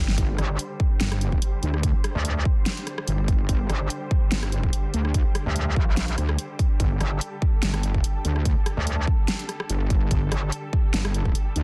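Set at 145 BPM in 4/4 with a half-time feel and a light 54% swing on the 16ths, this heavy, aggressive wobble dubstep excerpt opens with a drum fill over a G5 chord. A punchy, overdriven electronic kick sits up front, joined by a layered dubstep kit of hi-hat, rim click and a huge, driven snare. Two wobble basses share the low register between G1 and D2: one is a detuned sawtooth-and-sine unison patch, resonant yet mellow, and the other is a bright, metallic FM voice that enters at 0.4 seconds and drops out at 10.5 seconds, both saturated, compressed and thickened with chorus and overdrive. Behind them, a lush symphonic string section holds sustained bowed chords with smooth vibrato, low-pass filtered and pumping under sidechain compression. The whole passage sits in a digital ambience with a dense, heavily limited modern master.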